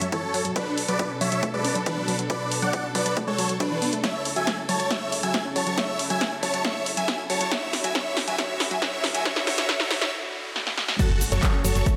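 Uplifting trance at 138 BPM in a straight 4/4, this excerpt from a longer piece feels bittersweet and soaring as it moves through F#m, Bm7, A/C# and Dadd9 before landing back on F#m at 11.0 seconds. A huge, euphoric supersaw lead carries the melody up front, bright and detuned with a moving notch, sidechain pumping and digital delay, while a lush unison pluck plays arpeggios under a filter sweep that runs through the whole build-up. A rich chamber string section holds bowed, vibrato-laden chords that pump with the sidechain, and a punchy analog drum machine sits up front with snare, handclaps, hi-hat and crash, backed by an electronic kick in the background, both re-recorded in a large room. Drum fills mark the build, a break arrives at 10.1 seconds, and a very quiet riser and impact enter at 8.1 seconds, leading into the impact, where a grainy egg shaker and a round, dark FM bass on F#1 briefly appear. 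A moderate, lush hall reverb gives the mix its sense of space.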